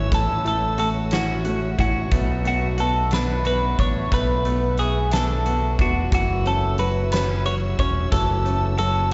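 An up-front, twangy twelve-string electric guitar carries the melody of this aching, dramatic six-eight pop ballad excerpt over a woody, boxy upright piano and a direct-recorded clean guitar's picked arpeggios, both with slapback echo like the lead, while a punchy, bright fingered bass, lush bowed strings murmuring sul tasto in the background, and a huge arena kit with fat snare entering at 0.1 s move through A6, Bm7 and F#m7, all heard as a live gig through the venue's PA with a dulled top end and recital hall reverb.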